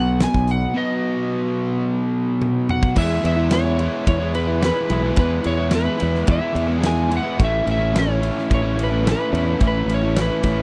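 Swaggering and confident, this classic rock passage, cut from a longer piece, moves at 109 BPM in a straight 4/4 in E major. A dark, overdriven guitar riff, picked, double-tracked, compressed and up front, shares the low end with a bright, growly, punchy fingered bass. A big acoustic rock kit with a fat snare and punchy kick rings in a bright stone room, using crash, ride, hi-hat and toms. Above them, an electric slide guitar played with fingerpicks carries the melody in a slightly broken-up tone. A break arrives at 0.8 seconds and closes with a drum fill from 2.4 seconds. At 3.0 seconds the harmony lands on E and later shifts to A, all captured in a dry, close, 1970s-style studio sound.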